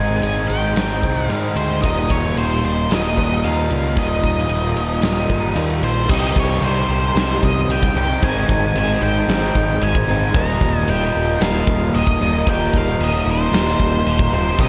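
A huge, punchy arena drum kit sits up front with bright cymbals from 0.2 seconds, driving this dreamy, blissful shoegaze and dream pop rock passage cut from a longer piece. A dark octave-fuzz lead guitar sings the melody through analog delay, while a growling, overdriven picked bass anchors the low end. Behind them, a crunchy guitar riff with ensemble chorus and a lo-fi, slightly broken-up fingered guitar through a small old amp with reverse reverb sit in a reverb-soaked mix, and a jingly tambourine is barely audible at 14.6 seconds.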